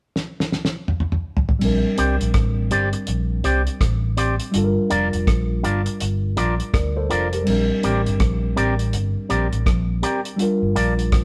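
A 4/4 groove at 82 BPM swings its sixteenths at 62%, opening with a drum fill on a cloth-damped, thuddy kit before the bass and electric piano arrive at 1.6 seconds. This smooth, romantic lovers rock reggae excerpt in Bb major moves between Bb69 and Gm7 chords. The drums sit up front with a fat snare, a tight kick, dark cymbals and a rolled-off top, while a vintage fingered electric bass, foam-muted, round and punchy, anchors the low end. A worn, slightly out-of-tune tine electric piano adds clean, direct accompaniment, and from 2.0 seconds an electric guitar plays twangy, picked stabs through an envelope filter with a touch of tube saturation. The band plays live in one moderate stone room, lending a 1.1-second reverb to the warm sound.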